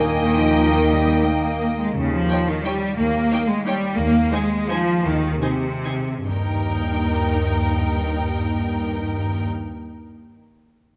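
A rich, up-front cello section and a rich double bass section anchor this elegant, sweeping classical fragment in Eb major, a rubato 3/4 running at 135-189 BPM that slows from 3.5 to 6.3 seconds. Above them an intense, distant violin section carries the melody over a smooth studio violin section, expressive viola, and a ringing, thumb-plucked harp that sounds until 10.2 seconds. Before 1.8 seconds a pure silver flute, a soft-attack clarinet, a mellow bassoon and a warm French horn section add brief colour, all within a moderate concert hall reverb.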